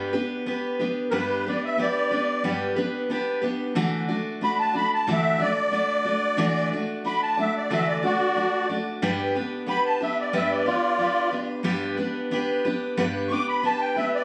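Rock at 91 BPM in G major with a nostalgic, warm mood, this brief passage cut from a longer piece opens on an up-front, picked steel-string dreadnought acoustic guitar with fresh strings moving through G, Dadd9 and back to G, joined at 1.1 seconds by a reedy, shimmering musette accordion in wet tuning that takes a dark, smooth solo melody, all captured on a phone in the room with light studio reverb and compression.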